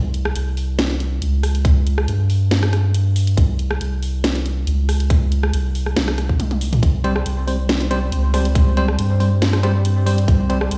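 A half-time 4/4 pulse at 139 BPM drives this brooding, meditative deep dubstep cut from a longer piece in C phrygian, where a round, up-front sub bass built from triangle and square waves sits under a garage kit of hi-hat, rim click, toms and a cracking snare, joined at 1.6 s by a tight electronic kick; after a brief drum fill, clean, bell-like electric piano stabs with dub echo arrive at 7.0 s and a moody, detuned sawtooth pad with chorus hovers in the background from 7.4 s, all heard as if played on a big sound system in a bare stone room.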